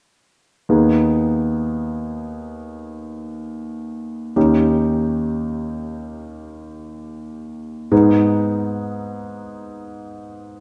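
Bathed in the wet reverb of a recital hall, this yearning, elegiac classical fragment in free time places a smooth, vintage-toned grand piano up front as accompaniment from 0.7 to 10.6 seconds, its low-to-middle register moving from G#m/D# through D#7 before settling back on G# minor at 7.9 seconds.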